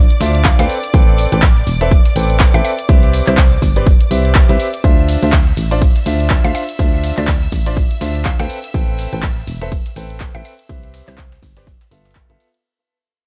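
A punchy, overdriven electronic kick sits up front in this soulful, energetic piano house cut at 123 BPM in D dorian, alongside a round FM bass, a clear grand piano riff with audible action noise and digital delay, lush bowed violin chords, a woody mallet-like synth pluck in the background, a house kit of handclaps, hi-hat, ride and shaker, a gritty, very quiet breakbeat kit, and a soft tambourine, all over swung sixteenths, with the bass, piano and strings pumping as the drop fades out from 4.8 seconds.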